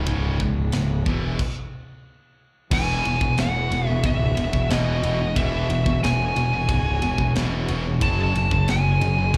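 A straight 4/4 heavy metal groove drives this aggressive fragment of a longer piece: two bright, distorted rhythm guitars riff in the background over a punchy, fuzzy electric bass up front and a tight, gritty acoustic drum kit with a high-tuned snare, and the band halts for a stop at 1.4 seconds before a dark high-gain lead guitar with slapback echo carries the melody from 2.7 seconds, joined by a very quiet, smooth bowed string section holding sustained chords, the whole heard as a live club gig through the venue's PA.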